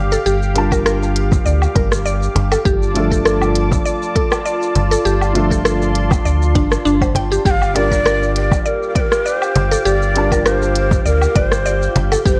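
Worn, warbling cassette tape and light reverb wrap this hypnotic, earthy organic downtempo excerpt in G minor at 100 BPM, with a gentle 16th-note swing over a Gm7 to Dm/G progression. A soft, muted felt upright piano with digital delay and a smooth, detuned analog pad both pump with sidechain compression alongside the deep, overdriven electronic kick. Beneath them sits a round, dark bass up front, while a woody, bright FM mallet pluck plays chorused arpeggios over an electronic kit of hi-hat, rim click, shaker and woodblock and a faint cajon in the background; a breathy, unsteady ney with tape echo takes the melody at 7.5 seconds, and a very quiet, airy wind-like noise texture drifts in at 8.9 seconds.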